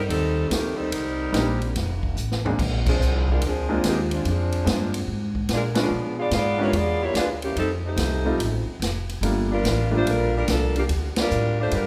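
Joyful and swinging, this short cut from a longer big band swing piece moves at 144 BPM in 4/4 with a strong swung eighth-note feel. A mellow saxophone section carries the melody up front, its smooth top and vibrato giving the ensemble a polished jazz sheen, while a woody, growly upright bass plays pizzicato beneath it with a bright, present edge. A natural-sounding big-band kit with a punchy kick and medium-tuned snare drives the groove, dropping a quick fill around 2.2 seconds before the band hits accents at 2.8, 5.7 and 11.1 seconds. A clear upright piano with short sustain enters at 1.3 seconds to comp through the changes, which move from a rootless F9 through Bb9 and a diminished chord before returning to F9 and Gm7. The whole band sits in a reverberant recital hall that lends the performance an airy, concert-stage glow.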